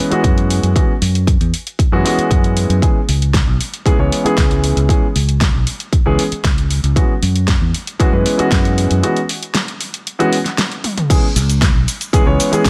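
A straight 4/4 groove at 116 BPM drives this sleek, cosmic nu-disco excerpt in C# minor, tuned slightly low with A4 at 439 Hz. A punchy, layered electronic kick sits at the center of the beat, joined by a produced pop kit of fat snare, warm hi-hats, cabasa, crash cymbal and toms. Underneath, a dark, round fingered electric bass plays direct and amped in a low register, carrying a sidechain pumping effect. A grand piano with an intimate, natural tone and audible action noise sits up front as accompaniment, also pumping with the sidechain and trailed by delay as it moves between F#9sus4 and C#m7 chords. The whole piece is bathed in digital ambience. A break begins at 9.0 seconds, a drum fill lands at 10.8 seconds, and at 11.1 seconds the track drops into a new section on C#m7.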